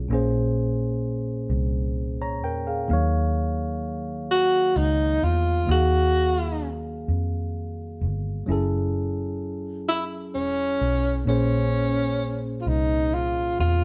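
Yearning and sultry, this slow R&B excerpt in six-eight sits at 43 BPM in Eb minor, with a clean, up-front tine electric piano and a round, punchy, foam-muted electric bass carrying the chords from Bbm9 through Ebm9 and Gbm9 and back. At 4.3 seconds a mellow, breathy tenor saxophone enters as the solo voice, playing in a jazz style with subtone, vibrato and scooped notes across a narrow range. The band sounds as if playing live together in a stone room with moderate reverb.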